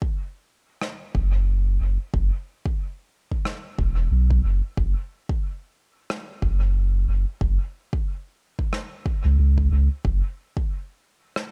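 A 4/4 pulse at 91 BPM carries a gentle 58% swing on the sixteenths, giving this meditative ambient dub a relaxed, spacious sway. A deep, layered electronic kick drum opens the recording at 0.0 seconds and sits up front, with a small-room character folded into its produced sound. A rim click enters at 0.8 seconds, dark and smooth with a rolled-off top, and its dub echo trails off into the open space around the beat. From 1.1 seconds a round, sine-like sub bass moves between E1 and C#2, its fast attack giving way to sustained, up-front notes. The overall sound is dry and close, with little reverb, and the passage is cut from a longer piece.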